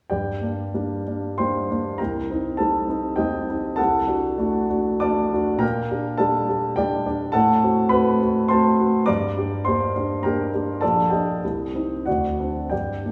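A lush recital-hall reverb surrounds this recording, with the room heard from further back while the baby grand piano itself sits up front with a natural, warm tone. It is a romantic classical character piece for solo piano in G minor, in 3/4 at 89-106 BPM with a freely breathing rubato feel, and it carries a passionate, bittersweet mood. The piano plays alone from 0.1 to 13.1 seconds, ranging from Bb1 up to D6 and tuned to A4 = 443 Hz. The harmony moves from Gm through Cm7, D7/C, Gm/Bb and F#dim/A before returning to Gm. It then closes on a brief turn through Gm/Bb, Cm and D7. The clip is cut from a longer piece.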